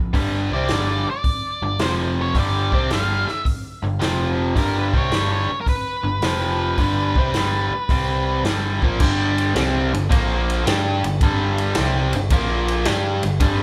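A biting, bright, double-tracked overdriven guitar riff sits up front in this raunchy, swaggering blues rock and southern rock excerpt with a swung power-trio feel, backed by a growly, punchy overdriven bass and a natural vintage kit with a medium-tuned snare and tight kick, while a dark octave-fuzz lead guitar with digital delay sings a melody from 0.5 to 8.4 seconds before the band moves into a new section at 9.0 seconds, all played together live in one room with light reverb.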